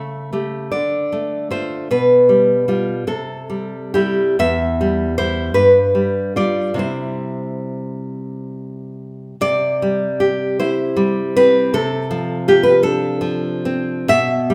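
A lone nylon-string guitar opens on an A7 chord over C-sharp in the bass, fingerpicked and placed up front, with a bright, fresh-strung tone and audible finger squeak. This is a tender, nostalgic romantic piece for solo classical guitar in C major and 6/8, moving slowly at around 42-56 BPM counted in dotted quarters, with a free rubato feel. The harmony passes through D minor and G7 over B to settle on C at 3.1 seconds, then moves through E minor and G7 back to C. The opening idea returns at 9.4 seconds, and the short extract closes on a D minor seventh over C at 11.7 seconds. The guitar spans E2 to E5 and sits in a moderate recital-hall reverb, as if recorded in a church or concert hall, and the clip is cut from a longer piece.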